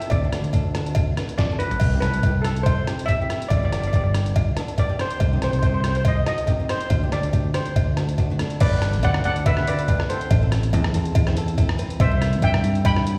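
Heard as a live gig through the venue's PA, with recital hall reverb and a light small-room ambience, this sunny, carefree calypso fragment in G major moves at 141 BPM with a gentle sixteenth-note swing. A shimmering lead steel pan struck with hard rubber sticks carries the melody over fingerpicked flamenco guitar with audible finger squeak, both touched by slapback echo. A growly, overdriven fingered electric bass and a gritty, pitched-down sampler-style trip hop kit with a thumpy kick sit up front, a close, dry cowbell with its own slapback echo sits in the background, and the drums play a brief fill at 1.4 seconds before a new section begins at 8.6 seconds.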